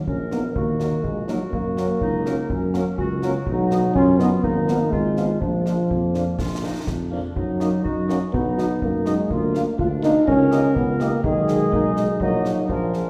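A close, soft-attacked euphonium sits up front in this martial, resolute wind-band march in 2/4, carrying a second line over a present solo tuba bass. Behind it, a distant trumpet section with light vibrato holds the melody in the background, while mellow French horns and a dark woodwind section fill out the roomy classical ensemble. Dry, close concert bass and snare drums with dusky cymbals drive the straight march feel, all set in a church-like hall reverb in this fragment cut from a longer piece.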